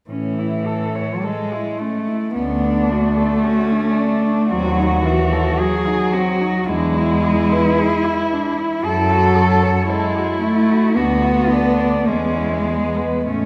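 Unhurried rubato at 55 BPM in 4/4, with uneven beats, carries this serene, lyrical classical passage for a cello ensemble in A major, moving from A through Dmaj7, D#m6, E7 and F#m7 to Bm/D and E. Four solo muted cellos play con sordino, each bowed with vibrato, light in the melody, bass and second line. The melody sits veiled in the background while an up-front accompaniment with soft attack and smooth top, a dark bass line, and a second line entering at 2.4 s fill out the texture. The players sound as if in a church or concert hall, wrapped in long, wet reverb, and the passage is cut from a longer piece.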